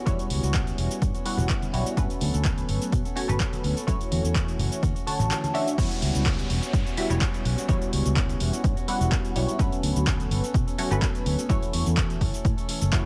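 A detuned, chorused sawtooth polysynth comp and a bright, twangy clean electric guitar riff open this nostalgic, funky filtered disco house excerpt, both low-pass filtered and pumping, joined at once by a round, foam-muted fingered bass, a layered punchy electronic kick and a tape-warm analog drum machine with handclaps, hi-hat and shaker, while very quiet, soft-handed tambourine and congas play until 5.8 s, where the drop arrives with an electronic downlifter running to 9.6 s.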